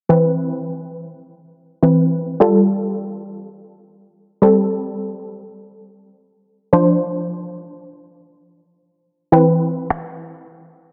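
A detuned sawtooth pluck opens the clip at 0.1 s, its fast attack and decaying tail sitting up front in the mix with a noise layer and a wave-folded edge. This upbeat, summery dance-pop passage moves in a straight four-beat feel as the pluck carries the accompaniment through Cmaj7, Fadd9, Am7 and Dm7 before returning to Cmaj7. A filter sweep runs across the whole passage, shaping the pluck's punchy, lush tone. Near the end, at 9.9 s, a brief burst of electronic finger snaps appears, tape-warm and forward, with soft clipping on the snare. A moderate, lush hall reverb surrounds the sound, and the master is dense and heavily limited, with a low-pass filter taking the top off the mix.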